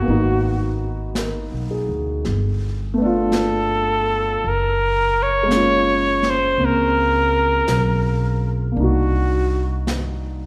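A slow swung pulse in four sets the pace for this intimate, late-night jazz ballad, cut from a longer piece and heard in a reverberant hall with a long, wet tail. Up front, a clear trumpet carries the melody from the start until 9.8 seconds, singing with vibrato and scooped notes over a smooth top. A grand piano with a warm, natural tone supplies the accompaniment, moving through a chord sequence that opens on Abm9 and passes through G9 and Gbmaj7 before settling on Cm7b5 at 8.8 seconds. Beneath it, a pizzicato upright bass with steel strings sounds woody, dark and growly, sitting close in the mix. A vintage kit played with brushes enters at 0.1 seconds, low in the balance, its medium-tuned snare and hi-hat warm and rolled off at the top.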